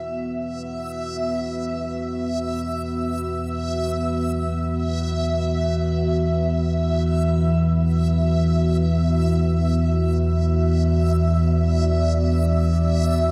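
A cavernous, huge reverb with a long tail surrounds this warm-produced dark ambient drone, cut from a longer piece and unfolding in free time over a sustained Esus2 chord. Up front, a deep, rumbling drone of detuned sawtooth and triangle tones with lush chorus fades in from 0.1 seconds. Behind it, a moody pad of unison sawtooth and sine layers with a sub octave holds sustained chords through chorus and shimmer reverb, fading in alongside the drone, while a reversed, granular texture adds a bright, dreamy swelling shimmer on a high E until 13.3 seconds.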